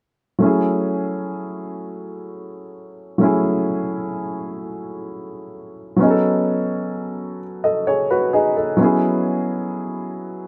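Moderate studio reverb gives a natural sense of space around a warm baby grand piano that sits up front, the only instrument in this short, late-night R&B fragment cut from a longer piece. In a slow, straight 6/8 at 43 BPM counted in dotted quarters, the piano plays accompaniment in F# dorian between F#3 and D#5, moving from F#m7 at 0.4 seconds to B9 at 6.0 seconds and E69 at 8.8 seconds. The mood is yearning.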